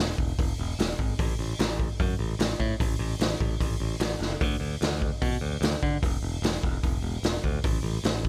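Energetic and upbeat, this short punk rock excerpt at 149 BPM in a straight 4/4 pairs a bright, growly picked electric bass ranging from E1 to D3 with a raw garage drum kit of hi-hat, boomy kick and medium-tuned snare that enters at 0.2 seconds, sounds saturated and gritty in a small pumping room with a rolled-off top, and breaks into a drum fill at 4.2 seconds, both parts sitting up front with little reverb.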